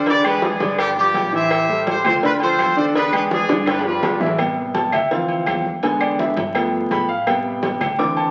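Salsa at 167 BPM in A minor, passionate and danceable, this fragment of a longer piece opens with a brilliant, punchy horn section carrying the melody up front over a concert grand piano with deep bass and long sustain, while a thumpy gut-string upright bass sits in the background. Agogo bells and timbales ring with a compressed, saturated edge beside soft-handed congas, low-tuned cowbell and bongos, and very quiet, woody claves, with a drum fill at 3.5 seconds. The horns drop out at 4.4 seconds as the piano takes a solo over the cycling E7, G7, Am7 and Dm7 chords, all bathed in a large studio reverb and the crackle of a very old 78 rpm record.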